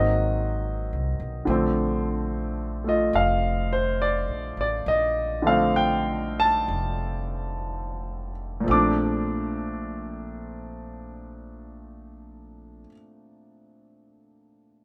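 A smooth, up-front concert grand piano with deep bass and a vintage tone carries this late-night, romantic jazz ballad in Bb major, swinging gently at 58-73 BPM and slowing between 1.5 and 8.7 seconds, while a woody, growly pizzicato upright bass on steel strings sits beneath it until 12.8 seconds, after which the piano plays alone in light reverb to finish this short cut from a longer piece.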